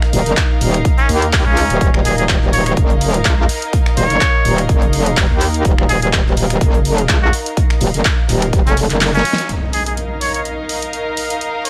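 A gritty, punchy mix sits in a small room ambience, with a metallic, saturated wobble bass and a punchy electronic kick pushed up front. This swaggering bass house cut runs at 125 BPM in 4/4 with a light 16th-note swing, holding on an Eb minor chord. A big-room dance kit adds finger snaps, handclaps, hi-hat and a huge snare, while a very quiet soul kit with a rolled-off top tucks its hi-hat and medium-tuned snare underneath. A distant, reedy string section with a gut-string tone bows harmony that pumps with the sidechain, and from 1.0 seconds a nasal, straight-muted trumpet plays a jazz-style solo line with vibrato, scooped notes and dub echo. At 9.0 seconds the kick drops out for a drum fill, with a band accent at 9.3 seconds, and at 9.5 seconds the chord shifts to Eb5 as an electronic impact rings out, closing this excerpt from a longer piece.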